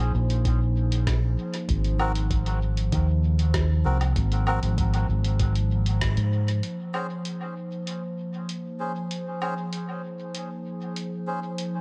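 A warbling, nostalgic pad of detuned, slow-blooming chords opens this hazy, spacious ambient dub passage at 97 BPM, joined at once by a round, punchy fingered electric bass up front with tube saturation, while a muffled, pitched-down sampler kit of hi-hat, rim click and woodblock trails dub echo under a soft, overdriven electronic kick set in the background. From 2.0 seconds a reedy, breathy melodica adds echoing stabs over chords moving between Bb7(no3) and Ab. During a band accent at 6.0 seconds the kick drops out, and the bass follows at 6.6 seconds, leaving pad, melodica and sampler kit in an echo-heavy, dry mix.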